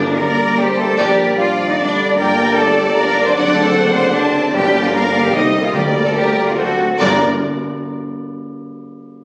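A dark, stormy passage from a fast romantic orchestral movement in triple time opens with most of the ensemble at once. A distant violin section and an airy silver flute trace a second line over sustained trombone and French horn chords, while shadowy trumpets add soft-attacked stabs and a punchy tuba joins the bowed double basses underneath. The close, up-front cello section carries the bass with a smooth, even tone and is the most prominent voice. Timpani strike briefly at the start and return at 4.5 seconds, and from 1.0 seconds a very quiet violin melody and a focused viola accompaniment enter. The playing is rubato and the music slows from 3.9 to 7.0 seconds, settling back on a minor chord as a new section begins. The sound sits in a wet scoring-stage reverb, heard as if captured on a phone in the room.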